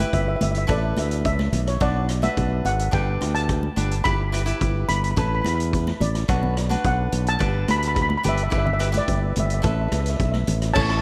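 A growly, up-front fingered electric bass anchors this cool, moody calypso excerpt at 107 BPM in straight 4/4, as a mellow, shimmering steel pan played with soft rubber sticks carries the melody through tape echo. A crisp, picked cavaquinho plays through the cycling Em/G, Asus2, Bm and G changes, and a street-band drum kit with a boomy kick and dark cymbals adds crash, hi-hat and rim clicks. Damped, hard-handed congas sit close and dry in the background from 0.4 to 10.6 seconds, and a moderate plate reverb gives the mix a dreamy, soaked atmosphere.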